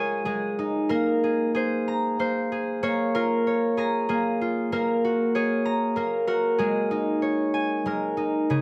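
Lightly reverberant, this short excerpt from a longer piece is a tender, innocent children's lullaby in a gently rubato three-beat sway, carried entirely by a solo concert harp that sits up front with a bright, ringing, fingerpicked tone, drifting through Abadd9, Bbm, Gb/Bb and Absus4 chords over its 8.6 seconds.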